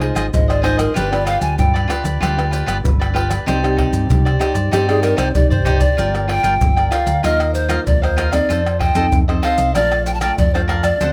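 A samba and choro piece at 96 BPM in a straight 4/4, cut from a longer work, with a yearning, bittersweet mood that begins in C minor and moves to G minor at 6.0 s. A mellow, airy pan flute carries the melody from 0.3 s, its woody tone marked by vibrato, a crisp chiff on each attack and a plate reverb, and it takes a solo through the opening six seconds. Beneath it, a picked, crisp cavaquinho and a thumb-plucked nylon-string guitar with fresh strings supply warm acoustic accompaniment, while an amped, fingered electric bass gives a warm low end. A close, acoustic percussion group of pandeiro, maracas, tamborim and a tight surdo drives the groove and plays a fill from 5.0 to 6.0 s leading into the new key. The harmony moves through rich minor and seventh chords, from Fm7/Ab and G7 to Gm7, F7 and Bbmaj7, all set in a modest small room.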